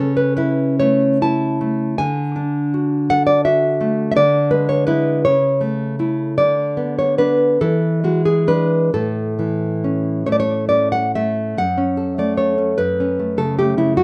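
A nylon-string guitar carries this short romantic piece alone, its full-bodied, deep classical tone sitting up front and fingerpicked throughout. The music moves in a lilting 6/8 at roughly 43-56 BPM, counted in dotted quarters, with a free rubato feel that lets the phrases breathe. Set in A major and tuned slightly below standard pitch, it has a sunny, warm mood, the harmony drifting from A/C# through Dadd9, E7/D, Bm/D and E7 before settling on A around 8.9 seconds. At 11.6 seconds the piece turns toward F#m as a new section begins, and this fragment of a longer work ends at 14.0 seconds. A slapback echo trails the guitar, while the outdoor recording leaves the instrument dry and close, with little ambience around it.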